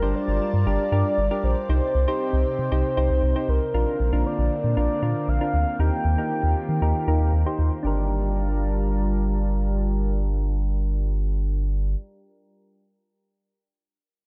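A straight 4/4 pulse at 117 BPM carries this melancholic, cool pop excerpt in G minor, its dark production bathed in light reverb as a deep, up-front analog bass anchors chords moving from Gm7 through Cmadd9, Bbadd9 and Eb6. Soft electric-piano-like synth keys supply gentle, decaying accompaniment, while a lush, thick unison pad holds detuned, warbling chords with slow attack and long release, both softened by chorus and a low-pass filter. Over them a mellow horn-like synth lead with vintage vibrato sings the melody until 7.3 seconds, and the remaining parts carry on through 12.0 seconds.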